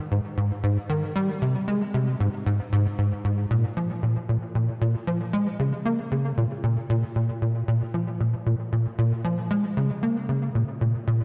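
A tight sequencer bass enters at 0.1 s and carries this short ambient passage entirely on its own, running until 11.2 s. Its punchy sawtooth and square-wave tone has a fast-attack filter pluck that decays, sitting up front while ranging from Ab2 to Bb3 in Bb dorian, tuned to A4 = 437 Hz. Ensemble chorus and analog delay thicken the line, and a lush hall reverb with a 2.8-second tail soaks the dreamy mix. At a straight 115 BPM in 4/4, the driving pulse contrasts with the spacious, mysterious atmosphere, and a new passage begins at 3.5 s. Cut from a longer piece, it feels expansive despite resting on a single part.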